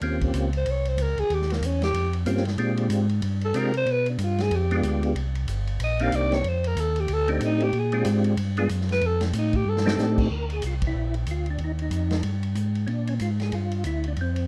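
A swinging, bluesy soul jazz organ trio cut from a longer piece opens at 186 BPM in Bb mixolydian, with a percussive tonewheel organ carrying the melody over a round, dark tonewheel organ bass, both up front with chorus vibrato and a slow rotary speaker, while a vintage acoustic drum kit with a tight kick and rolled-off top sits back in the mix. At 0.6 seconds a growling alto saxophone joins for a raspy, gritty solo full of scooped notes and subtone, running until 10.3 seconds, where a drum fill hands off to a new section marked by a band accent at 10.8 seconds. The production is dark with moderate studio reverb, moving through rich chords like Eb13, G7b9 and F13 before settling on Bbadd9, Ebadd9 and Bb6.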